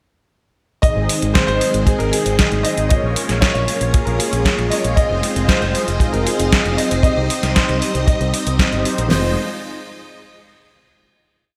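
A damped 70s drum kit sits up front in this short, danceable and bittersweet italo disco piece at 116 BPM in F minor, its tight kick driving a four-on-the-floor pulse under a fat, dry snare and open hat. Beside it, a detuned 8-bit digital drum machine adds a sampler-style disco beat of closed and open hats and a medium-tuned snare, treated with gated reverb. A fingered electric bass enters at 1.0 seconds, bright and tube-saturated through an envelope filter, galloping in sixteenth notes, while a lush string machine holds sustained pad chords colored by phaser and ensemble chorus. Mellow synth brass, round and detuned with a filter sweep and vibrato, adds held chords with syncopated pushes, and a warm concert grand piano with delay carries a motif-based melody with long sustain. The chorus moves through Ab, Bbm7, Fm7 and Cm before settling on a final Fm7 chord at 9.1 seconds, set in a moderate plate reverb and a bright 1980s-style digital production.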